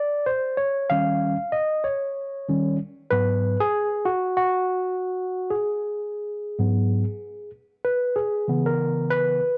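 A worn tine electric piano sits up front and plays entirely alone, its clean, slightly out-of-tune tone coming through built-in speakers and colored by cassette tape. This cool, nocturnal hip hop fragment, cut from a longer piece, moves in 4/4 with a gentle swing on the sixteenth notes. The piano's range stretches from G#2 up to E#5. It opens unaccompanied before settling onto D#7 and then G#m7 at 3.1 seconds, shifting to a new passage on C#m7 at 8.2 seconds. Light reverb and a digital ambience surround the intimate home cassette recording.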